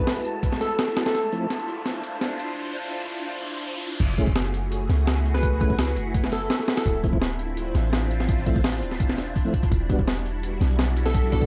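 A compressed sampler-style breakbeat kit with a thumpy kick and high-tuned snare drives this raw, nostalgic drum and bass and jungle excerpt at 168 BPM, alongside silky string-machine chords through phaser and ensemble chorus, soft flute-like tonewheel organ stabs with fast rotary speaker and dub echo, a glassy, detuned wavetable pluck melody, a breathy wind-like noise texture and an electronic riser through the build-up before a deep, boomy 808-style bass lands at the drop at 4.0 s, the whole recording carrying dry hardware grit, transformer saturation and vinyl crackle.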